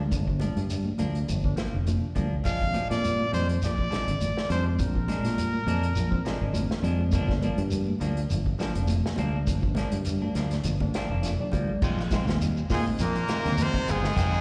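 A hypnotic, joyful afrobeat groove at 102 BPM in 4/4, with a light sixteenth-note swing, is carried by a round, punchy fingered bass up front, a vintage kit with dark cymbals and a punchy kick, very quiet high-tuned congas, and a grainy shekere, while a reedy, worn electric piano with fast tremolo sits in the background beside a barely broken-up guitar playing arpeggios and a clean semi-hollow guitar adding stabs through lush chorus, slapback and tape echo. A brilliant trumpet carries the melody from 2.5 s and returns at 12.7 s, joined there by a growling baritone saxophone and a raspy tenor saxophone on a second line, all three with slapback echo. Drums and electric piano fill together just before the shift to a Bb9sus4 chord at 11.8 s, and the whole band is heard through a venue's PA with recital-hall reverb.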